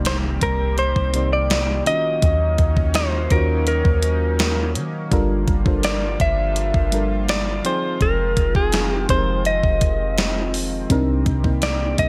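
A gated 80s drum machine sits up front with a thumpy kick and a gated-reverb snare, setting a sensual, longing contemporary R&B groove in this short passage cut from a longer piece, as a very quiet electronic impact opens the first 2.2 seconds. A bright, clean electric guitar recorded direct carries the melody with vibrato and delay, over a mellow, warbling FM electric piano with chorus, a shimmering, retro pulse-width pad holding sustained chords, and a deep, round 808-style bass. The chords move from Cm7 through Ebm7, Gm7 and Fm7 before returning to Cm7, and the sound is dry.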